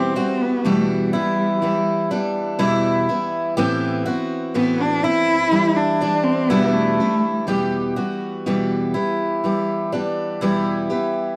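A nasal, bowed cello carries this intimate, melancholic acoustic folk passage with expressive vibrato and portamento until 7.5 seconds, over a picked steel-string acoustic guitar and shimmering, octave-doubled fingerpicked twelve-string arpeggios that continue on to 11.4 seconds, all captured up front in a dry, close, 1970s-style small-room recording.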